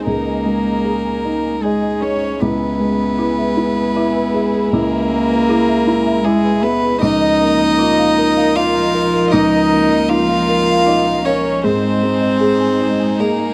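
Hopeful and tender, this short excerpt of neoclassical piano and strings moves in a gentle 3/4 at 78 BPM with a free, rubato feel. A rich, floating solo violin carries the melody up front, bowed sul tasto with a soft attack, while a single cello, smooth and pure, traces a second line beneath it. A felt-muted upright piano supplies the accompaniment, its thick-felt tone mellow, dark and intimate, sitting up front in the mix. A chamber string section holds sustained chords with light vibrato, and from 0.1 seconds a woody, rustic marimba played with medium mallets adds arpeggios in the background, touched by a slapback echo. The harmony drifts from Ab5 over Db through E over Db and Ebsus2 over Db before settling on Ab at 11.6 seconds, all captured in a dry, close 1970s-style studio sound with light reverb.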